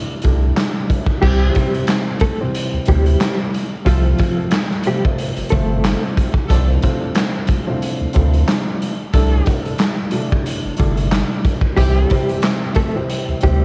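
Swung sixteenths at 91 BPM drive this soulful boom-bap hip-hop excerpt in C major, with a punchy, gritty garage kit of kick, snare, hi-hat, handclaps and crash sitting up front beside a deep, thick saturated sub bass. A dark, woody upright piano with cassette coloring opens alone, and from 1.2 seconds a clean, fingered electric guitar carries the melody through tremolo and analog delay while a distant, warm horn section adds stabs with light vibrato. At 11.8 seconds a very quiet tonewheel organ with key click holds sustained chords as the guitar returns, the whole piece wrapped in a lo-fi home cassette sound with vinyl crackle and light reverb.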